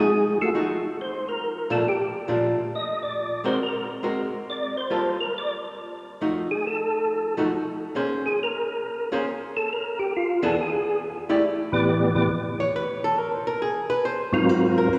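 Soulful and greasy, this short jazz excerpt swings in 4/4 with a lilting eighth-note feel. A percussive tonewheel organ carries the melody and takes the solo up to 11.4 seconds, its mellow, round tone colored by third-harmonic percussion, chorus vibrato and a slow rotary speaker. An electric archtop guitar, miked through an amplifier, accompanies throughout, sounding dark, clean and picked with a hollow-body character, then steps forward for its own solo from 11.4 seconds to the end. Both parts sit up front, wrapped in a lush church reverb that gives the performance the air of a large hall. The harmony moves through rich jazz colors such as F7b9, Bbmaj7, Gm9 and E7b9 before settling on A7sus4 and G#13 as the cut ends.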